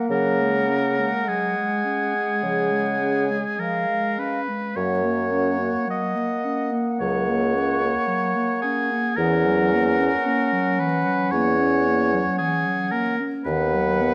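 Unhurried and elastic, this slow romantic movement for wind quintet moves in a rubato 4/4 at 50-57 BPM in F# major, its serene, tender mood drawn from a longer piece. An airy, distant flute carries the melody with a straight tone and soft attack, while a clear, up-front oboe with light vibrato sings a second line above a dark, smooth clarinet, a clear French horn and a mellow, close-miked bassoon bass with its own vibrato. The harmony settles from C#sus4 to C# and into F#, reaching B/D# near 13.5 seconds, all wrapped in a moderate scoring-stage reverb with a layer of vinyl crackle.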